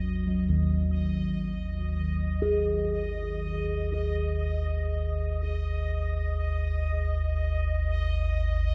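A dark ambient drone in free time, this short, unsettling fragment from a longer piece sits in a huge reverberant space. Up front, a deep, ominous drone rumbles from G#1 to D#2 under a filter sweep, while gamelan-type bossed gongs with a metallic, bronze, beating tone play arpeggios through a diffuse ambient delay until 8.4 seconds. High above, a bubbling, resonant stepped-filter texture with detuned chorus fades in across the whole 8.7 seconds.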